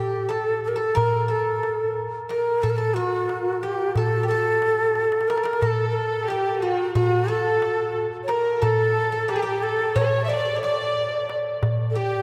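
A breathy, end-blown ney carries the passionate, stately melody up front with vibrato, over a mellow, metallic Greek bouzouki on a second line, and a hard-handed clay darbuka joins at 0.3 seconds. This Turkish makam ensemble piece is in A makam hicaz, moving in a straight 9/8 at 180 BPM in eighths, all set in a vast, echoing cathedral space. After a drum fill from 5.0 seconds, a clear, biting studio violin section enters at 5.6 seconds with a bowed second line of its own in this excerpt cut from a longer piece.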